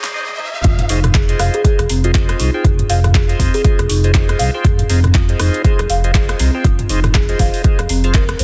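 A dense, heavily limited modern master in a digital ambience carries this spiritual, driving afro house cut, where woody marimba arpeggios, bright, reedy tonewheel organ stabs with slow rotary speaker and digital delay, and a deep house kit of fat snare, metallic hats, handclaps, rim clicks and toms run throughout. A short electronic riser and drum fill give way to a drop at 0.6 seconds led by an overdriven, up-front kick and a dark gliding synth bass with sidechain pumping, and a ringing kalimba melody sits in the background from 1.5 to 3.9 seconds.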